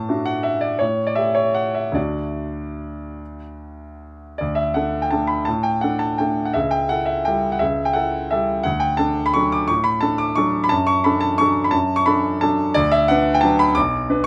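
A clear grand piano carries this short classical waltz entirely by itself, its smooth, vintage tone sitting up front in a light reverb. The music is in D major and 3/4 time, with a rubato feel that lets the tempo drift between 142 and 185 BPM. The mood is nostalgic and wistful, and the piano spans a range from deep bass notes up into the high treble. The opening passage moves around D major before a new section begins at 4.4 seconds, passing through A7 and D/F# and then settling on a B minor colour near 12.8 seconds. The tuning sits slightly above standard pitch, at A4 = 445 Hz, and the recording is a brief cut from a longer piece, ending at 14.3 seconds.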